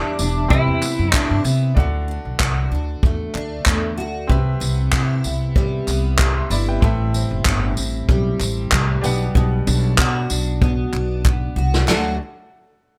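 At 95 BPM in 4/4 with a light sixteenth-note swing, this easy-going, carefree acoustic pop piece in D mixolydian opens with a clean, compressed twelve-string electric guitar carrying the melody through lush chorus and plate reverb until 1.4 s. A bright, full-bodied, double-tracked dreadnought acoustic guitar and an intimate, brilliant baby grand piano with audible action noise and plate reverb accompany a woody, growly pizzicato upright bass and a roomy vintage brush kit with dark cymbals, tight kick, snare, china cymbal, tambourine and handclaps. Crisp, very quiet group handclaps add a close, dry touch, and a drum fill from 10.6 s leads back to a D chord at 11.9 s, all under a light reverb.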